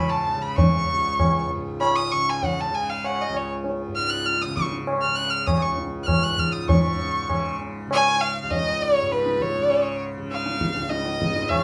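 Set in a straight five-beat cycle, this short Hindustani classical passage is cut from a longer performance and carries a serene, devotional mood. A softly plucked tanpura sounds from the start, its buzzing, shimmering drone sitting low and quiet beneath the melody. A single bowed violin plays up front with a clear, biting, intense tone, vibrato and a smooth top as it carries the line high into its upper register. The low-tuned tabla joins at 0.3 seconds, ringing and distant as if set in a large room. The music moves into a new section at 6.7 seconds, and the studio reverb places the ensemble a little further back in the space, with the strings tuned slightly below standard pitch.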